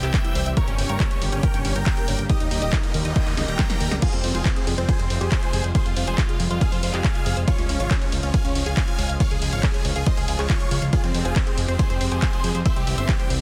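A huge, euphoric supersaw lead carries the melody through this driving, soaring uplifting trance passage in F minor at 139 BPM, its bright detuned tone colored by phaser and tape echo and pumping with the sidechain. Beneath it, a lush, chorused unison pad holds sustained chords, a detuned pluck spins decaying arpeggios with tape echo in the background, and a fat, nasal analog bass pumps alongside. An overdriven, up-front kick anchors the punchy, tape-warm analog drum machine, which brings snare, handclaps, hi-hat, ride and crash, while a very quiet noise sweep sounds from 2.7 to 4.0 seconds under a drum fill that lands on the Fmadd9 chord, all in a dense, heavily limited, fairly dry mix.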